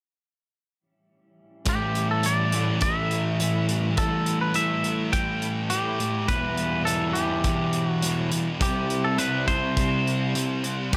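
A light, small-room ambience frames this wistful, blissful shoegaze and dream pop excerpt, where from 1.7 seconds a clean, twangy electric guitar melody with tape echo rides over an overdriven semi-hollow guitar riff bathed in reverse reverb, a thick fuzz guitar riff thickened by distortion and ensemble chorus, and an up-front, loose indie drum kit of hi-hat and punchy kick with a rolled-off top, moving through A7(omit3), Em and C.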